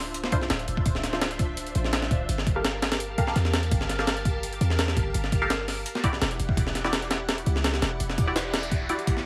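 A gritty, compressed breakbeat kit sits up front with a thumpy kick and high-tuned snare, driving this nostalgic, dark drum and bass and jungle excerpt over a deep, boomy 808-style bass. Silky vintage string-machine chords with phaser and ensemble chorus drift through Dm9, Gm9 and Em9, while a muted, detuned dub chord stab with cassette tape colour and dub echo sits in the background. Vinyl crackle and light reverb colour the sound, and an electronic noise sweep enters at 8.4 seconds.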